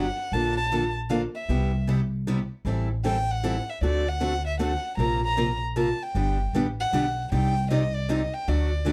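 Charming and playful, this short excerpt of acoustic string swing in the jazz manouche style moves at 155 BPM in 3/4 with a swung eighth-note feel. A rich, bowed violin carries the melody between D5 and Bb5, played sul tasto with light vibrato and an airy, intimate closeness. Beneath it, a picked steel-string parlour guitar supplies bright, boxy accompaniment with fresh strings and audible finger squeak. An upright bass, played pizzicato on gut strings, adds a woody, thumpy low end from G1 to D2. The harmony moves through Bbmaj7, Cmaj7, Am7 and D7 before Bbsus2 and G, closing on Cmadd9 at 7.3 seconds, all three instruments sitting up front in a dark production with light reverb.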